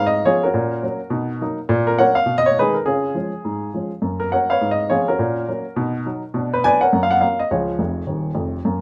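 Swinging in a brisk 4/4, this playful, exuberant stride jazz cut features a solo upright piano with a woody, up-front tone and short sustain, moving through chords such as C#7/G#, Bmaj7 and Bm in a moderate club reverb before a fill at 7.8 seconds.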